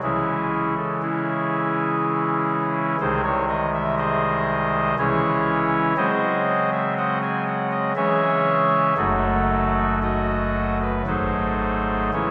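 This classical chorale-style piece for solo pipe organ is grave and solemn, moving at 60 BPM in 3/4 with a flexible, rubato feel in C# minor. The organ sounds through a soft reed oboe stop with a baroque voicing and an audible chiff, and the instrument sits up front in the mix. Its range reaches from a deep F#1 up to G#5. The harmony centers on C# minor, moving through G#/B#, G#7/C#, and D#dim/F# before arriving on an unresolved G#7b9 at 11.1 seconds. A wet church reverb with a 2.9-second decay surrounds the organ, giving the sense of a church or concert hall. This passage is cut from a longer work and lasts about 12.3 seconds.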